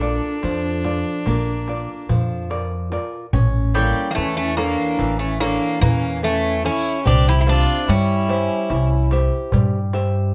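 This Greek folk piece for a bouzouki band, cut from a longer work, has a melancholic, reflective mood. It moves in 9/8 at 145 BPM counted in eighths, with a straight feel in A phrygian dominant, and the harmony passes from Bb to A at 3.3 s, where a second section begins, and then to C. The picked bouzouki carries the melody up front, its double strings, some doubled at the octave, giving a metallic shimmer, while a single violin plays a second line with a soft attack, light vibrato and an airy, intimate sul tasto bow. Both drop out at 9.1 s, while the fingerpicked classical nylon-string guitar and the pizzicato upright bass carry on to the end, joined by the darbuka until 10.1 s. The bass sits up front with a woody, thumpy steel-string tone, and the clay-shell darbuka, played with hard hands on natural skin, sounds distant and large-roomed in the background. Close, detailed microphones and light reverb frame the ensemble.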